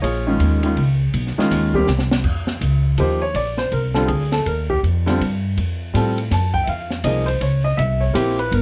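A swung waltz feel carries this short, cool and smoky jazz piano trio clip, where a woody, thumpy pizzicato upright bass sits up front beside a warm, open baby grand, and a small-room acoustic kit with dark cymbals, a high-tuned snare and a boomy kick plays a fill at 1.9 seconds before the piano takes a solo from 2.2 seconds, all under light reverb and the warbly pitch drift of worn cassette tape.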